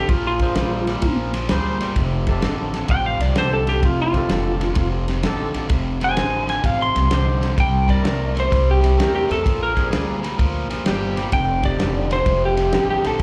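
This live club recording comes through the venue's PA with a light reverb, catching a laid-back, soulful electric blues shuffle cut from a longer piece. At 128 BPM in a swung 4/4 and F mixolydian, it moves through Bb9, F9 and C9 chords while a lightly driven lead guitar solos across the whole 13.2 seconds. Its tone is dark, compressed and slightly broken-up, picked up front with plate reverb and slapback echo. Beneath it, a crunchy, bright overdriven guitar picks a low riff, and a jazz-style horn section with a smooth top adds stabs that share the lead guitar's plate reverb and slapback echo. A woody, thumpy pizzicato upright bass on gut strings sits prominently in the mix, and from 0.1 seconds a dry soul drum kit with a fat snare, tight kick, ride cymbal and rolled-off top keeps the groove.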